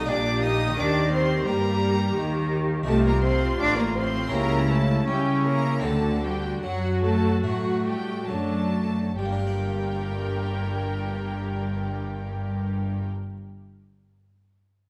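In a straight 4/4 that slows between 1.5 and 9.2 seconds, this stormy, driving baroque-style concerto fragment sets a rich, vibrato-laden violin section and a focused solo cello on the melody, with a second violin line in the background, a smooth chamber viola section and a bright, airy harpsichord filling in the accompaniment, and a bowed cello section and up-front double bass section on the bass, heard in a dark, warm production with moderate recital hall reverb.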